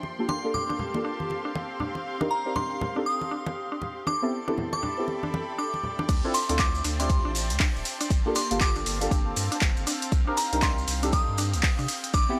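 A dry, gritty hardware recording with light small-room reverb, this smooth deep house excerpt in D minor moves at 119 BPM with swung 16ths over ninth chords. It opens on filter-swept layers of a silky vintage string machine and a dark, wave-folded chord stab with phaser and delay, along with a veiled con sordino violin section, a rich, earthy chamber string section and ringing, close congas; a crystalline FM bell melody and a woody synth pluck arpeggio arrive just after, and all the pads, stab, pluck and string parts pump under the sidechain. At 6.1 seconds the drop lands as the congas and muted violins fall away and a round sine sub bass enters with a deep, up-front layered kick, an overdriven analog drum machine with handclaps, crash and hi-hat, a very quiet jazz kit with dark cymbals and a high-tuned snare, and distant, grainy maracas.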